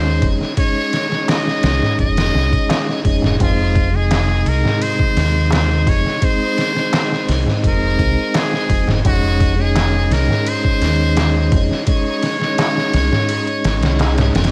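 Trip hop at 85 BPM in a straight 4/4, this smoky, dark excerpt is cut from a longer piece and tuned to A4 = 438 Hz. A muted trumpet carries the jazz-style solo melody, buzzy and breathy with light vibrato, soft attacks and scooped notes, trailed by dub echo. Beneath it a tonewheel organ sits up front through a slow rotary speaker with harmonic tremolo, its piping, scooped tone holding the harmony over Absus4/F, Fm7 and back to Absus4/F. A deep dub fingered electric bass, round and punchy, anchors the low end, while a sampler-style drum kit arrives at 0.2 s with a thumpy kick, medium-tuned snare and ride cymbal, compressed, pitched down and coloured by vintage 12-bit grit. From 1.3 s a metal-shell darbuka adds crisp, distant percussion from a large room in the background, and the whole mix stays dry under a layer of vinyl crackle.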